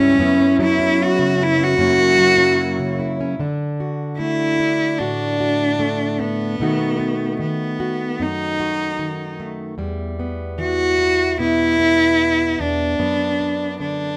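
Folk music, heartbroken and melancholic, this short piece cut from a longer work moves at an unhurried, straight 4/4 pulse. A single bowed cello carries the melody up front, its rich, smooth tone shaded with vibrato and held close and even. Beneath it, a fingerpicked jumbo steel-string acoustic guitar with fresh strings supplies a full-bodied accompaniment throughout. For the opening 3.4 seconds, a chamber string section sits in the background with warm, intimate sul tasto chords and light vibrato before it falls away, leaving cello and guitar alone. The harmony drifts from suspended and dominant colours on F# into D, B7 and Em, settling on Bm/F#, all bathed in light reverb.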